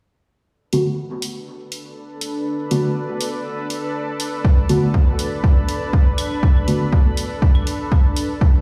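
Dub techno at 121 BPM in B minor, cavernous and deep, where a soft, warbling chord stab on a Bm7 drenched in chorus, phaser, dub echo and a filter sweep sits up front from 0.7 seconds, a blurred granular cloud pad breathes underneath with its own reverb and sidechain pumping, dark electronic hi-hats tick along, a punchy kick arrives at 4.4 seconds, and tape-warm claves with dub echo flicker in the background near the end of this fragment of a longer piece, all set in a big room's studio reverb as if played on a large sound system.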